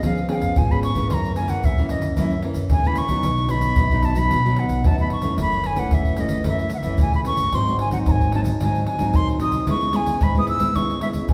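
An airy, up-front wooden flute carries a tongued, straight-toned melody over fingerpicked classical nylon-string guitar, a woody, growly pizzicato upright bass in the background, and tight surdo with tube shaker and pandeiro in this lively, playful samba and choro cut from a longer piece, moving at 112 BPM in 4/4 through chords from C#7/E# to C#m7 in a wet recital hall with a 1.8-second reverb.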